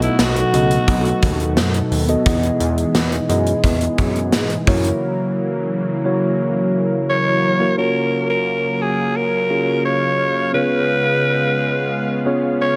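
Light reverb and a small-room ambience frame this uplifting, romantic 1980s-style pop excerpt, where a raspy, gritty alto saxophone with bright vibrato leads the melody up front, dropping out briefly before returning at 7.1 s. Underneath, a mellow tine electric piano plays throughout, a bold, brassy analog pad with chorus and a filter swell holds sustained chords, and dark, round synth brass stabs sit in the background. A fat, detuned analog bass and a punchy gated 80s drum kit with a bright stone-room sound drive the opening before the bass stops at 4.9 s and the drums at 5.0 s, leaving the keys, pad and brass stabs to carry on until the saxophone re-enters.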